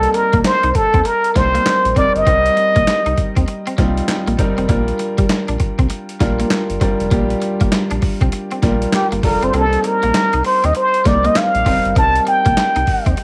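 Punchy and bouncy, this short cut of swung new jack swing R&B at 99 BPM in C dorian sets an up-front, gritty, pitched-down boom bap drum kit of thumpy kick, snare, hi-hat and handclaps (the kick briefly dropping out) under a round, deep analog bass, an intimate grand piano with audible action noise, a twangy clean electric guitar riff with analog chorus, and a plunger-muted trumpet melody with wah-wah, scooped notes and light vibrato that plays until 3.4 seconds and returns at 8.9 seconds, the whole captured as a small-room home cassette recording.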